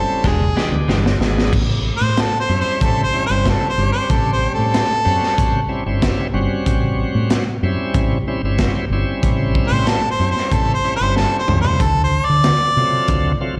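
A clear, up-front harmonica opens this gritty, swaggering soul blues cut at 93 BPM over a shouting tonewheel organ with slow rotary speaker and light overdrive, and a round, punchy fingered bass, while a bright, clean guitar adds compressed stabs in the background only from 0.2 to 1.1 seconds as the saturated, dark-cymbaled breakbeat kit enters with a fill. The harmonica solo, with light vibrato, tongue slaps and scooped notes carrying slapback echo and overdrive, rests from 5.8 to 9.7 seconds before returning, as the chords move from E7#9 to A7#9 and D7#9 and the drums fill again around 11.2 seconds. The whole thing sounds like a live gig heard through the venue's PA, set in a recital-hall reverb.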